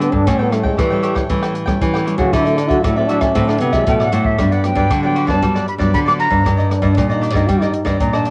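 Heard through the muffled haze of a home cassette recording in a small, lightly reverberant room, this playful, festive excerpt of samba and choro moves at 116 BPM in G major, tuned slightly flat to A4 = 436 Hz, over chords of A7, Dadd9, Gmaj7 and Ebmaj7/G. A breathy, whispered trombone with light vibrato and scooped notes takes an intimate jazz-style solo from the start, alongside a mellow, crisply picked cavaquinho, a woody fingerpicked nylon-string guitar with old strings in the background, an up-front fingerpicked nylon-string bass line, and a dark, smooth drum kit of hi-hat, boomy kick and rim click. At 3.9 seconds a distant, airy metal flute enters with a chiffy, crisp attack and expressive vibrato to carry the melody.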